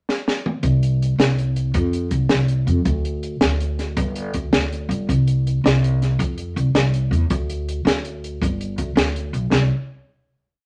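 A short highlife guitar band piece in 12/8, it moves with a danceable, carefree lilt at 108 BPM counted in dotted quarters. A compact cocktail drum kit opens with a fill at 0.1 seconds during the pickup bar, using crash cymbal, hi-hat, kick, snare and toms, then settles into a 12/8 groove. Its sound is dry and acoustic, with dark cymbals, a high-tuned snare and a punchy kick placed up front. The upright bass joins at 0.6 seconds, plucked pizzicato on gut strings in a woody, thumpy dotted figure that ranges from G1 to F2 and also sits up front. Light reverb surrounds the pair, and after a single section the piece closes on a final note that rings from 9.5 seconds.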